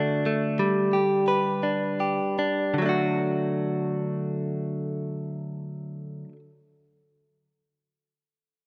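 A swaying 6/8 pulse at roughly 49 to 62 beats per minute on the dotted quarter slows down over the opening 2.8 seconds of this tender pop fragment in D major, cut from a longer piece. A clean, picked electric guitar, recorded direct, compressed and placed up front, plays alone from the start until 6.4 seconds, moving from D to G and back to D at 2.8 seconds, where a new section begins. The guitar carries spring reverb inside a moderate plate-reverb space, and the whole has the rough feel of a home demo mix.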